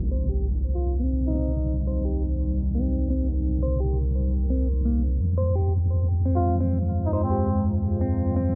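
A deep, soft wobble bass sits up front throughout this dark, cinematic drum and bass excerpt, its chorused, compressed tone rumbling low beneath a half-time feel with a light swing. Behind it, a moody ambient pad holds sustained chords with a slow attack and long release, its detuned, wave-folded sound washed in chorus and reverb. A clean, twangy electric guitar picks arpeggios through low-pass filtering and analog delay, with a filter sweep running across the whole passage. A trumpet with a bucket mute enters at 0.7 seconds and again at 6.4 seconds with short, veiled jazz-style phrases, raspy and growling, with scooped notes and vibrato trailing into delay. An electronic impact sounds in the background at the opening, and the harmony moves from C minor to F minor at 5.2 seconds, all captured in a dry, gritty digital ambience with its top end rolled off.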